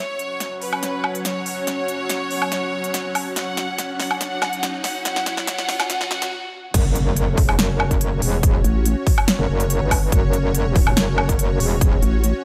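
A metallic wobble bass dominates this heavy, aggressive wobble dubstep excerpt, hitting at 6.7 seconds with an FM-edged, saturated growl thickened by chorus and overdrive, while a nasal, formant-filtered vowel-sweep wobble bass jabs in for brief moments on A1. The piece moves at 142 BPM in 4/4 with a half-time feel. It opens with a build-up: a biting, bright violin section carries the melody with light vibrato and a dub echo, set over a lush supersaw pad whose detuned sawtooth chords carry vintage 12-bit grit and sidechain pumping. A big-room dance kit with a punchy, overdriven snare, crisp hats, crash and woodblock plays a fill through the build as a riser and impact sit in the background, and a brief stop follows at 6.3 seconds as the violins fall away. The drop then lands with a punchy, tape-toned electronic kick up front beneath the basses, while the pad sustains until 12.4 seconds, all in a light digital ambience.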